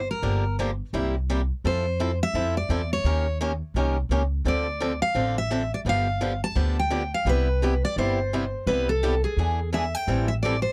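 Swinging at 171 BPM in 4/4, this charming, playful stretch of acoustic string swing in C major puts a bright, fresh-stringed picked steel-string guitar melody up front over a woody, thumpy pizzicato upright bass on gut strings and a boxy picked swing-style rhythm guitar with audible finger squeak, moving through chords from Gm7 and C7 to Cmaj7, E7 and Am7 in a dry, close 1970s-style studio sound with light reverb, cut from a longer piece.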